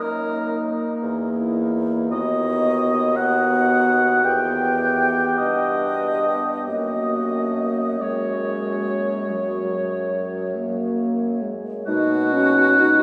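A rubato 12/8 lilt at 42-59 BPM in dotted quarters carries this serene, lyrical classical excerpt for wind quintet in B major, where an airy, hollow flute sings the melody with vibrato alongside a punchy, up-front oboe second line, a dark horn and smooth-topped clarinet fill in the accompaniment, and a warm, distant bassoon holds the bass with light vibrato, the ensemble set within a wet cathedral reverb heard from further back and settling onto B at 11.9 seconds.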